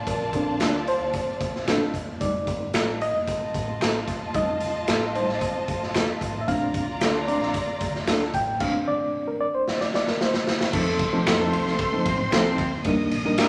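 A reedy, worn electric piano with a fast tremolo leads this uplifting, joyful slice of 1960s-style soul, taking an up-front solo from the start that sounds slightly out of tune through its built-in speakers. Underneath, a gritty, saturated garage drum kit with a punchy kick and medium-tuned snare drives a straight 4/4 groove at 113 BPM in F mixolydian, its bright stone room pumping behind crash, ride and hi-hat. A dark, round, foam-muted electric bass sits in the background alongside twangy, slightly broken-up guitar stabs and very quiet finger snaps. A lush studio violin section carries a second line with expressive vibrato and portamento over harmony moving between Bbmaj7, F7 and Ebmaj7. After a drum fill at 9.7 seconds, a smooth-topped horn section with light vibrato joins at 10.7 seconds for a brief second line, and the whole passage, cut from a longer piece, sits in a wet, large studio reverb.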